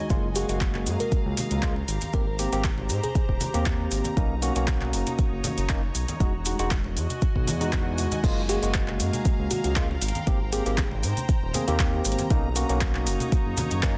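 Deep house at 118 BPM in F# major, soulful and warm, with a deep, up-front electronic kick and a layered kit of metallic hats, handclaps and crash, a smooth sawtooth synth bass, barky tine electric piano stabs with digital delay, a clear bowed string section pumping under sidechain, grainy maracas, ringing congas in the background, a very quiet swell at 7.4 seconds before the drop at 8.2, and a sparkling, bell-like FM electric piano melody with chorus over maj9 chords, all in a dense, heavily limited, dry mix cut from a longer piece.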